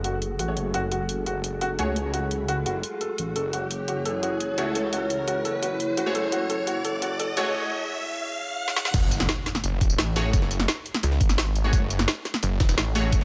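A snarling, growling distorted saw bass drives this aggressive, futuristic dark technical drum and bass excerpt at 172 BPM in F# minor, where a felt-muted upright piano's soft, echoing arpeggios and a moody analog pad build beneath bright, phased orchestra-hit-like stabs, a riser and a woody-snared drum kit until the drop at 8.9 seconds brings in a knocking overdriven kick and a gritty, very quiet jungle sampler-style kit, all set in a lush hall reverb.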